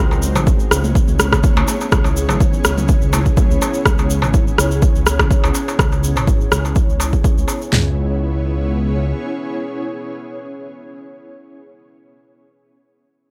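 A deep, rumbling detuned saw bass with tube saturation opens this hypnotic, driving afro house cut, pumping against the sidechain under a filter sweep, while an ethereal, airy pad holds sustained chords through ensemble chorus, tremolo and built-in reverb, also under a filter sweep. Percussion arrives almost at once: high-tuned congas played with soft hands sit in the background, beside a crisp metal-shell darbuka and a grainy, bright tube shaker. A moment later a deep house drum kit comes up front with a punchy kick, fat snare and toms, joined by a layered electronic rim click, both carrying studio reverb. The congas drop out at 3.7 seconds, the rim click stops next, and the drums, darbuka and shaker fall away around 7.7 seconds as a new section begins, leaving the bass until 9.1 seconds and then the mellow pad alone. The recording has a dry, gritty hardware character, with a light swing on the sixteenths.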